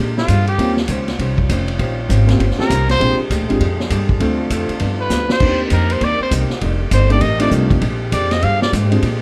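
A dark production with light reverb frames this energetic, brassy stretch of big band swing, cut from a longer piece and moving at 199 BPM in 4/4 with a swung eighth-note feel in Bb mixolydian. A bright, forceful trumpet sits up front and carries the melody from 0.2 s, its vintage jazz tone marked by light vibrato, scooped notes and a punchy attack. Beneath it, a woody, thumpy pizzicato upright bass drives the low end, while a vintage drum kit in a studio room supplies ride, hi-hat, snare, kick and crash, with dark cymbals, a punchy kick and a brief fill at 5.1 s. A grand piano adds warm accompaniment, a clean, picked hollow-body archtop guitar comps quietly in the background, and a warm saxophone section holds sustained ensemble chords behind everything else. The harmony circles around Bb13 and Eb13 before a turnaround through Dm7, G7, Cm7 and F13 that lands back on Bb13.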